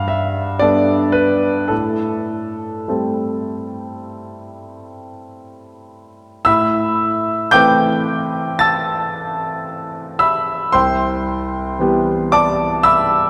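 Impressionist classical solo piano in A minor, moving with a rubato feel at roughly 49-58 BPM, casts a mysterious, nocturnal mood across this short fragment cut from a longer piece. A clear, polished grand piano sits up front with long sustain, ranging from C2 to A6 through colorful chords such as Gadd9, Am7, Amadd9 and Cmaj7, with a new section beginning around 6.5 seconds. The recording, made in a church or concert hall, is bathed in a wet, lingering church reverb.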